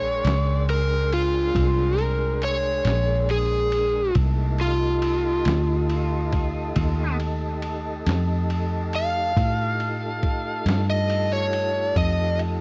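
Soulful and swaggering, this slow 12/8 blues excerpt centres on an up-front overdriven slide guitar solo, played with fingerpicks, over a round, foam-muted electric bass, a dark tonewheel organ turning through a slow rotary speaker, mellow horn chords in the background, and a muffled, thumpy sampler-style drum kit of kick, snare and ride that enters at 0.2 seconds, all in a dry, close 1970s-style studio sound moving from Bb13 to F13.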